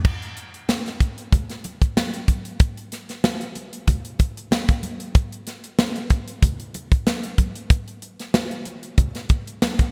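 Bittersweet and urban, this short pop excerpt at 94 BPM in 4/4 with a light 16th-note swing sets a tight, dry, polished funk drum kit up front (crash, hi-hat, tight kick and medium-tuned snare under gated reverb) while bright, thin-skinned congas struck with hard hands sit close yet in the background from 0.7 seconds, all framed by light reverb, studio ambience and a bright 1980s-style digital production.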